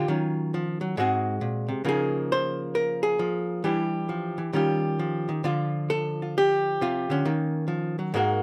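Solo jazz guitar in a sophisticated, playful mood, taken from a longer piece: a single miked and amplified archtop carries everything at 135 BPM in 4/4, with a swung eighth-note feel stretched by rubato and tuned a little sharp to A4 = 444 Hz. The electric hollow-body tone is dark, clean and picked, sitting up front in a light reverb as it ranges from Ab2 to C5. Over 8.4 seconds it moves through rich harmony, from Ebm9 and Ab7 to a resolving Db69, then on through Em7, Eb9 and Dm7 before settling on Ebm7.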